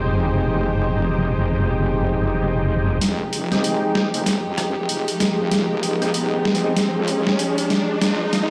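Glitch hop with a swaggering, funky mood, cut from a longer piece, opening on a dark, bowed chamber string section holding sustained chords over a heavy, detuned wobble bass, while an overdriven tonewheel organ plays thick stabs through chorus vibrato, slow rotary speaker, low-pass filter and delay. At 3.0 seconds a gritty, compressed sampler-style boom bap kit of hi-hat, rim click and high-tuned snare joins with a drum fill as the build-up begins, and a filter sweep runs across the organ, which stops at 6.7 seconds. An electronic riser enters in the background at 4.9 seconds, and the mix sounds as if played on a big sound system in a bare stone room.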